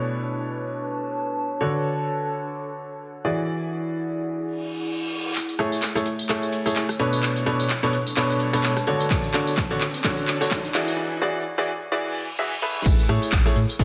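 Piano house at 128 BPM in A major, feel-good and joyful, with a light swing on the sixteenths, cut from a longer piece. A clear, up-front grand piano riff opens the track alongside a warbling, nostalgic lo-fi pad with chorus and its own reverb, both pumping against the sidechain, while the piano carries a low-pass filter and tape echo over a chord cycle of Bm9, Dmaj7, E9 and Amaj7. At 5.4 seconds a reverse cymbal ushers in a build-up in which a filter sweep works on the piano, a crisp, layered house kit brings handclaps, hats, rim clicks, tambourine and crash, and a gritty, overdriven sampler-style kit sits very quietly underneath with its own hi-hat and snare. A punchy analog kick, re-recorded in a large room, joins at 9.1 seconds, and a riser and second reverse cymbal in the background lead into a hollow, percussive, organ-like FM bass that arrives at 12.9 seconds on Amaj7. The mix sits in a lush digital hall reverb, with the top end rolled off above 7.7 kHz.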